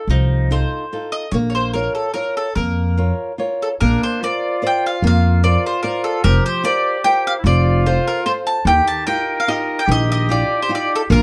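A brisk 3/4 pulse at 147 BPM carries this passionate, romantic Italian folk excerpt, which opens in B-flat harmonic minor before brightening to B-flat major at 3.8 seconds. An up-front, round mandolin picks the melody on its double strings over fingerpicked flamenco guitar with fresh strings, while a woody, thumpy pizzicato upright bass anchors the low end. At the shift to major, a mellow oboe enters with a distant, roomy second line in classical style, touched with light vibrato, all captured by close, detailed microphones and light reverb.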